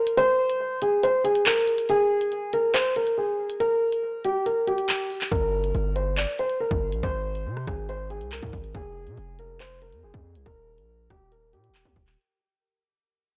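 Cold and dark, this short drill excerpt, cut from a longer piece, moves at 140 BPM in 4/4 with a half-time feel, tuned slightly low to A4 = 435 Hz. A dark, boxy concert grand piano carries the melody between G4 and D5 from the start, its mellow tone shaded by a low-pass filter and tape echo. An electronic drill kit of handclaps, rim clicks, crisp hi-hats and a hard-clipped kick sits up front, entering at 0.1 seconds. The opening break runs until 5.3 seconds, when a punchy, heavy 808-style bass arrives. Its saturated sine tone with a noise layer and fast attack spans Eb1 to C3 under chords of Gm, Ab, Fm and Eb. The whole recording is blown-out and overdriven, set in light digital reverb, with a fade-out stretching across its length.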